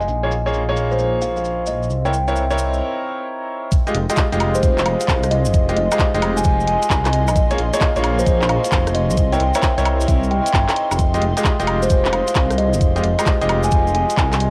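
A two-step UK garage groove at 132 BPM swings its sixteenths in 4/4, setting a late-night, soulful mood in F minor in this fragment of a longer piece. From the start, a woody, ringing kalimba carries the melody through an analog delay, framed by a very quiet, breathy pad with slow-blooming chords, grit-tinged stabs from a brilliant grand piano, a deep, rumbling detuned saw bass sitting up front, and a grainy, close cabasa. After a short break from 2.8 seconds, the drop lands at 3.7 seconds as a knocking, tape-warm electronic kick and a layered garage kit of handclaps, filtered hi-hats, rim clicks and woodblock come in with studio reverb. The chords cycle through Bbm7, C7b9 and Fm9, giving the harmony a jazzy, yearning pull. The whole mix has the muffled, intimate character of a home cassette recording with little room sound.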